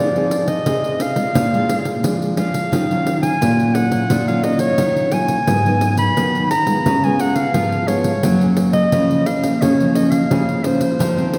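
A breathy clarinet sings the melody up front in a jazz style, with vibrato, scooped notes and a smooth top, giving this nostalgic yet lively samba and choro excerpt its voice. Beneath it, one fingerpicked nylon-string guitar plays full-bodied classical accompaniment in the background while a second nylon-string guitar carries the bass line, its finger squeaks audible, through chords moving from Fm7 to Ebm9 and on to Gbmaj7. A jingly pandeiro played with hard hands enters at 0.2 s, close and dry against the rich, reverberant wash of a church or concert hall.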